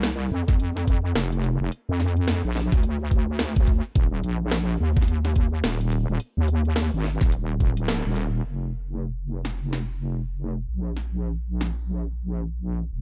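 Glitch hop with a gritty, funky swing, cut from a longer piece, opening on a drop where a heavy, detuned wobble bass growls up front with saturated chorus grit beneath a cracking snare and metallic hi-hats from a tape-warm electronic kit. A knocking, up-front electronic kick joins at 0.5 seconds, drops out at 7.9 seconds on a band accent, and the bass carries on into the next section until the end at 13.0 seconds. The production is dark and dry, with the drums sounding re-recorded in a small room.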